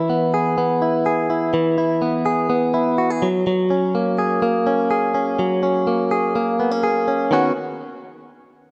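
A lone clean electric guitar opens this short indie pop fragment, recorded direct and placed up front with a bright, twangy, compressed tone and a warbly pitch drift that gives it a nostalgic, slightly wobbly character. Set at 125 BPM in a straight 4/4 and tuned to A4 = 439 Hz, the picked part moves between D#3 and G#4, starting on an E chord before shifting to F#add9 at 3.2 seconds. A lush hall reverb with a 2.3-second tail soaks the guitar, adding a generous, airy wash around each note. At 7.3 seconds the music turns toward a new section on Badd9, and the guitar plays until 7.5 seconds. The rough home-demo mix feels intimate and unpolished, like a bright, wistful sketch lifted from a longer piece.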